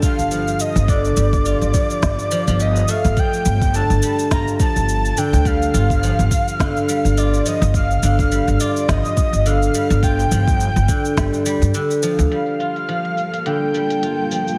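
A breathy, flute-like synth lead with chorus and tape echo sings over ringing, silvery fingerpicked guzheng arpeggios from the start of this organic downtempo piece in G minor at 105 BPM, while a soft electronic kick and a tape-warm kit of woody snare, crisp hats and cabasa set a gently swung 16th-note groove. A dark, thumpy pizzicato upright bass with gut strings and tube saturation pumps beneath, moving from G7(no3) to F69/G, and the kick drops out at 11.3 seconds. Near the end, a cloudy, bright granular pad drifts in at 12.8 seconds on Gm9, all framed by a moderate hall reverb and a heavily compressed, radio-like sheen that gives the earthy mood a hazy glow.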